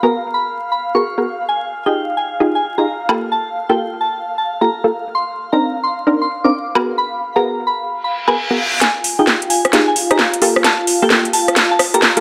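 A punchy, bright chord stab sits up front throughout this moody, skippy two-step UK garage excerpt, its detuned sawtooth and wave-folded tones given a filter pluck, chorus and a gritty vintage 12-bit sampler edge. At 131 BPM in 4/4 with a 64% swing on the 16th notes, it moves through minor ninth chords in F dorian, from Abm9 through Fm9, Gm9 and Cm9. A soft, pure FM synth bell carries the melody high above, its mellow decaying notes softened by chorus, a low-pass filter and tape echo, while an airy, breathy pad holds sustained chords beneath with a slow attack and long release. The garage drum kit, with a cracking snare, metallic hats, rim click and woodblock, flickers in briefly at 3.1 seconds before settling in from 6.8 seconds, high-pass filtered and placed up front. A reverse cymbal at 8.1 seconds leads into a build-up with a drum fill and filter sweeps on the bell and pad, all set in light digital reverb over a layer of vinyl crackle.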